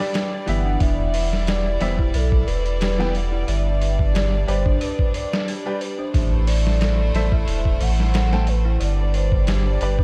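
A light reverb and digital ambience frame this melancholic, hypnotic trip hop excerpt at 90 BPM in 4/4, with a gentle swing on the sixteenths. Up front sits a compressed, pitched-down sampler-style drum kit, muffled and tape-warm from re-recording in a small room, with a thumpy kick, medium-tuned snare and hi-hat, while a deep, round sine sub bass joins at 0.5 s and holds sustained low notes. A clear, woody upright piano with a vintage edge carries the accompaniment through harmonic tremolo and tape echo, and a studio violin section bows earthy sustained chords with light vibrato. The melody comes from a pure, breathy sine lead that glides with portamento and vibrato, softened by lush chorus and tape echo. In the background, an eerie, inharmonic FM bell, detuned and full-bodied, spins decaying arpeggios through chorus, tremolo and echo as the harmony moves from G to Em, back to G, then Am and G.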